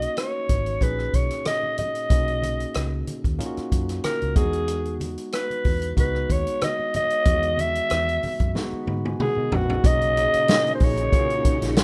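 Smooth and lush, this short cut from a longer 1970s-style soul piece moves at 93 BPM in 4/4 with a gentle sixteenth-note swing, in B major, drifting between Bmaj9 and Emaj9. A raspy, growling alto saxophone carries the melody up front, clear, gritty and vintage with vibrato, over a bright, barky tine electric piano that is lightly overdriven through a combo amp. Underneath, a dark, foam-muted fingered electric bass sits round and punchy, while a natural-sounding vintage drum kit with a punchy kick, medium-tuned snare, rim clicks, hi-hat and toms plays with a rolled-off top, and compressed, low-tuned congas with a thin, damped skin tap along in the background. At 8.5 seconds the drums and electric piano both break into fills, and at 9.8 seconds the harmony returns to Bmaj9 as a swirling sawtooth string machine enters with soft-attack sustained chords, colored by ensemble chorus and phaser. 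A very quiet vibraphone with soft mallets adds a metallic, airy, ringing G#4 from 10.2 seconds, all set in a small room reverb with the rough feel of a home demo mix.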